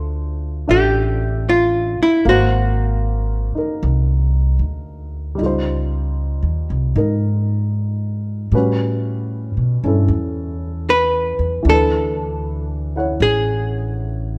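Jazz ballad excerpt at 77 BPM with an intimate, melancholic swing, where a clean, picked hollow-body electric archtop guitar sits up front with the melody until 4.6 seconds and returns at 10.9 seconds, over a dark, mellow baby grand piano whose short sustain and audible action noise lend it a natural closeness, while a woody pizzicato upright bass anchors the harmony from Dm7 through C#maj9#11 to D69, all in light reverb.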